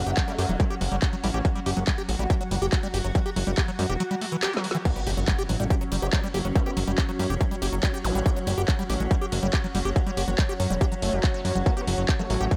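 Psychedelic trance at 141 BPM in F# phrygian, intense and trippy, built on an overdriven, distorted electronic kick up front and a fat, detuned sawtooth analog bass, with a squelchy, resonant acid riff pumping through phaser and delay, a crash, handclaps, metallic hats and a woody snare from the drum kit, an evolving, morphing wavetable pad and a mellow, ethereal airy pad glowing in the background with chorus and reverb, and a wobbling formant-sweep bass line slipping in briefly; a drum fill at 4.4 seconds leads into the drop at 4.9 seconds, where a very quiet impact and zap effect arrives.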